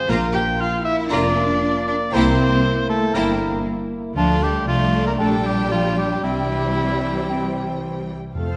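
A straight 4/4 pulse at 117 BPM drives this short, fast romantic orchestral passage, cut from a longer piece, whose restless, stormy mood moves through Bb, C7, Dm, Gm/Bb and C. Up front, a warm cor anglais with light vibrato carries a prominent second line over a woody double bass section. Behind them, a violin section with a smooth top, vibrato and portamento sings the melody in the background, joined by a focused chamber violin section, a lush viola section and an expressive cello section. A dark, distant clarinet and a pure, hollow silver flute with soft attack add further lines, while a mellow, roomy French horn section holds sustained chords from 0.0 seconds. Articulate timpani struck with hard mallets enter close and dry at 8.3 seconds, and the whole orchestra is bathed in a wet scoring-stage reverb.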